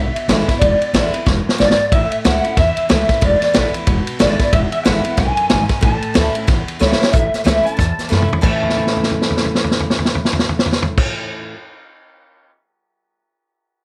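Rockabilly at 184 BPM in A major, this upbeat, retro clip swings its eighth notes and moves between E7 and A chords. A twangy, slightly broken-up electric guitar through a small old amp carries the melody, colored by ensemble chorus and tape echo. Beneath it, a full-bodied steel-string acoustic guitar picks its accompaniment with audible finger squeak, while a woody, thumpy upright bass with gut strings holds the low end. The vintage drum kit is the loudest part, with a punchy kick, medium-tuned snare and dark cymbals across crash, ride, hi-hat and toms, and it drives several fills, the longest running from 8.6 to 11.0 seconds. The electric guitar and bass stop around 11 seconds and the acoustic guitar shortly after, leaving the drums to ring on until 12.5 seconds inside a studio reverb.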